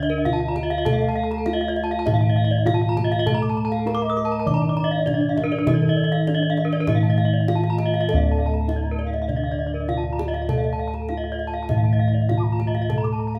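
Balinese gamelan in D pelog at 100 BPM in a straight 4/4, brilliant and hypnotic, cut from a longer piece and played live by an ensemble in a large studio with moderate reverb. A bronze metallophone carries the melody with padded mallets and shimmering paired tuning, over a lower, band-limited, vintage-toned metallophone accompaniment and two horn-mallet metallophones weaving arpeggios, one dark and smooth, the other bright and airy. Round, beating bossed gongs sit up front on the bass, a tight kendang enters at 0.3 s in the background, and a distant, unsteady bansuri with vibrato and a soft attack floats a mellow second line behind them.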